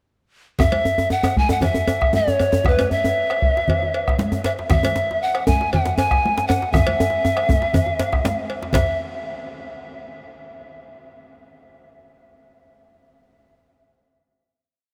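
At 0.6 seconds an airy, woody pan flute enters up front with tongued, chiffy call phrases and vibrato, joined by a deep, dark, saturated bombo, ringing high-tuned congas played with soft hands, and two djembes: one rattling with metal up front for lead phrases, the other tight and cracking in the background, while a dry, metallic cowbell starts its bell pattern at 0.7 seconds. This driving, earthy West African drum ensemble piece moves in a straight 4/4, the bombo, congas and background djembe laying down evenly spread patterns beneath the flute's motifs, all set in a dreamy mix soaked in huge ambient reverb. A drum fill runs from 6.7 to 8.7 seconds before a final note rings out to the end.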